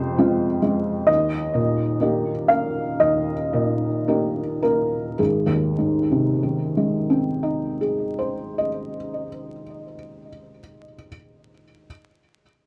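A felt-muted upright piano plays alone from 0.0 to 11.9 s in this hopeful, tender neoclassical minimalist piece in Ab major, moving rubato in 4/4 between 52 and 69 BPM with a mellow, intimate tone, audible action noise, short sustain and a touch of tape echo, slowing through Fm and Eb before settling on Ab at 5.2 s, set up front in a wet studio reverb on a gritty hardware recording laced with vinyl crackle and tuned to A4 = 438 Hz.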